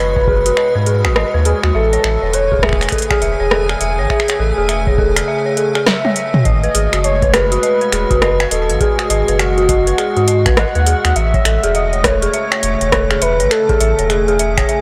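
A swung sixteenth-note groove in 4/4 drives this glitchy, eerie IDM excerpt, built on an overdriven electronic kick with a deep analog thump and an up-front electro drum machine of finger snaps, metallic hi-hats, rim clicks, toms and a punchy, soft-clipped snare, with a drum fill at 5.9 s. Beneath it a round, mellow sine sub bass sits prominently, while an icy, crystalline glass pad holds slow-blooming chords washed in chorus and its own reverb. A velvety detuned synth lead carries the melody with vibrato and portamento, treated with chorus and tape echo, alongside a dark, inharmonic FM bell playing decaying arpeggios through the same chorus and tape echo. A very quiet flickering, grainy granular texture hovers on a single note until 6.5 s, where the piece moves into its second section. The harmony shifts between minor-seventh and major-seventh colours before settling on a plain major chord, and the whole mix is blown-out and overdriven, set in a moderate echo-chamber reverb.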